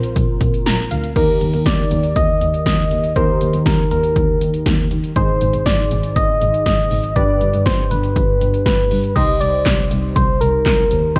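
Synth-pop at 120 BPM with a driving, cool mood, cut from a longer piece: a gentle, round FM lead with chorus and vibrato sits up front over sawtooth analog keys, detuned and swept by a filter with chorus and phaser, which add a quick fill from 0.4 to 1.2 seconds. Overdriven 80s electronic drums punch through with a gated snare, metallic hats and a short room on the claps, while a bowed double bass, smooth-topped and focused, enters at 0.2 seconds. Light reverb frames a progression that moves from Bbsus2 through Eb, Ab and G to settle on Cm at 9.2 seconds.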